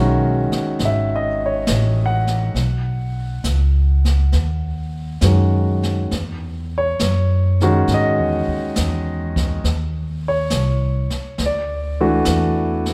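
A slow 4/4 swing at 68 BPM, with a lilting eighth-note feel, sets up this tender, late-night jazz ballad, cut from a longer piece. The pizzicato upright bass, woody and up front on steel strings, carries the low end from the opening moment, while a brushed drum kit joins at 0.5 s with brushed snare, hi-hat and a boomy kick sitting quietly in the background. A concert grand piano provides the accompaniment, intimate and polished, with deep bass, long sustain and the faint sound of its action audible up close. The harmony drifts through lush extended chords, moving from Amaj9 to Cb69, Emaj9 and Cm before settling on Dadd9. A moderate concert-hall reverb gives the trio a spacious, churchlike glow, with a faint mains hum beneath it.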